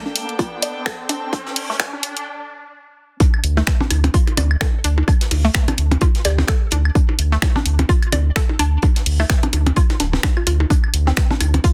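Quirky and clinical, this excerpt of minimal techno moves at 128 BPM in 4/4 with a swung sixteenth feel, set in D minor. It opens on a build-up over a Dsus4 chord, where an electronic riser sounds alongside a soft, floating bowed string section that pumps under sidechain until 2.3 seconds, while a filter sweeps across the arpeggio and a brief break follows. A hollow, bouncy square-wave pluck carries the riff throughout, coloured by chorus, phaser and digital delay, alongside a punchy, up-front electronic kick, a house kit of finger snaps and hi-hat, and a brushed acoustic kit with a rolled-off top sitting in the background. The drop lands at 3.2 seconds on a D5 chord, bringing in electronic percussion blips and claves and a round, dark analog bass with tube saturation and sidechain pumping. Around 6.2 seconds a woody, mallet-like synth pluck flickers briefly on G4 in the background, treated with chorus, cassette tape colour and dub echo. 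The mix is dry, dense and heavily limited, with a modern finish.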